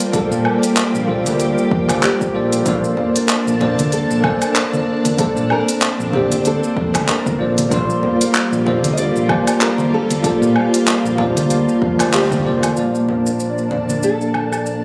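Caught on a phone in the room, this sunset chillout fragment is washed in hall and club reverb and pressed by compression: a blissful, swung groove at 95 BPM in Bb major that drifts between Gm11/Bb and Bbmaj9. A bright, bell-like tine electric piano sits up front with tape echo, a dark, fingerpicked nylon-string guitar carries the melody through its own tape echo, and a silky, vintage string machine holds mellow, slow-attack chords with ensemble chorus. Overdriven deep house drums with handclaps, hi-hat, shaker and woodblock ride over a deep, overdriven electronic kick and a punchy, amped fingered bass, low-tuned congas enter in the background at 3.0 s, and the band hits an accent at 12.1 s just before the kick stops at 12.4 s.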